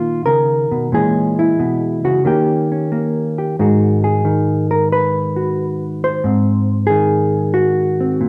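Solo jazz with a smoky, cool mood, moving at 91 BPM in 4/4 with a swung eighth-note feel. A single hollow-body electric jazz guitar carries the whole excerpt, its tone dark and clean, fingered rather than picked, and placed up front in the mix. The harmony passes through Eb5, Bbm7b5 and Eb7 in the opening section before shifting to G#m7 at 3.6 seconds and settling on G#7 at 6.2 seconds. A wet, large studio reverb surrounds the guitar, giving the sound the air of a live room. The fragment is cut from a longer performance and ends at 8.3 seconds.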